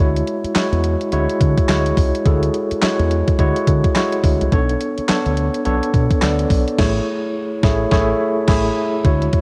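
Swung sixteenths drive this punchy, bouncy new jack swing R&B snippet, cut from a longer piece, where a crisp, overdriven 8-bit drum machine with a thumpy kick, medium-tuned snare, handclaps, hi-hat and crash enters up front at 0.2 s over a dark, round fingered dub bass and a clean tine electric piano through its built-in speakers, moving from Dmaj9#11 to Bm9 and landing on Amaj7 as a band accent hits at 6.8 s, all captured as a home cassette recording with light reverb.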